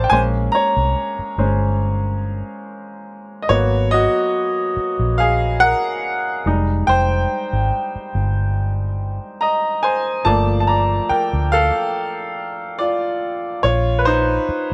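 A clear baby grand piano with long sustain leads this moody, longing contemporary R&B passage, playing a solo at 71 BPM in G phrygian over a round, foam-muted vintage electric bass that sits dark and up front. The harmony moves through Bbm9, Abm9 and Fm9 before a new section arrives at 10.3 seconds with Gm9, settling on Bbmadd9. The room carries a light reverb and a softened top end.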